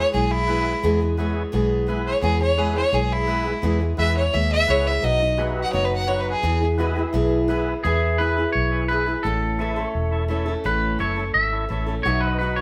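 Recorded live in one room with moderate studio reverb, this is a nostalgic, easygoing slice of honky-tonk and classic country. A biting, up-front fiddle with light vibrato carries the melody until 6.7 s. Beneath it play bright picked acoustic guitar, a round, punchy foam-muted electric bass, gritty overdriven tonewheel organ with key click, and pedal steel guitar holding compressed sustained chords with volume swells. At 7.8 s a clean, twangy electric guitar steps forward for a solo as the harmony moves through A and back to B.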